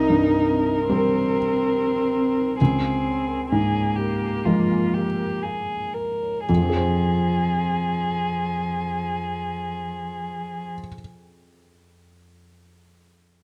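A felt-muted upright piano sits up front, its soft, intimate tone and short sustain carrying audible action noise as it supplies the accompaniment in this fragile, longing neoclassical piece for piano and strings. The music moves in a rubato 4/4 at 57-77 BPM in F minor, slowing through the opening 6.5 seconds over Cm7 and Bbm7/Db harmonies before settling onto Fm. A single con sordino violin, also up front, sings the melody with vibrato and portamento, its veiled, smooth-topped sound paired with a dark, muted cello playing a bowed second line beneath it. Very quiet marimba arpeggios, struck with soft mallets on rosewood bars, add a woody, round glow until about 6.4 seconds. The strings stop at 10.7 seconds, leaving the mellow piano alone until 13.4 seconds. Light reverb and a dark, warm production frame this excerpt from a longer work.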